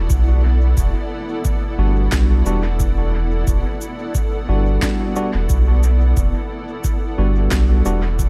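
Ambient dub at 89 BPM in E minor with a light 16th-note swing, this short, deep and hazy excerpt sits on a single Em7 chord, carried by a blurred, detuned granular cloud pad and a round, up-front sub bass thickened by tube saturation. An overdriven analog-style kick and a woody, tape-toned snare with electronic cabasa sent through dub echo come in at 0.1 seconds. A clean tine electric piano joins with stabs at 1.8 seconds, colored by medium tremolo and dub echo through a combo amp, all within a digital ambience.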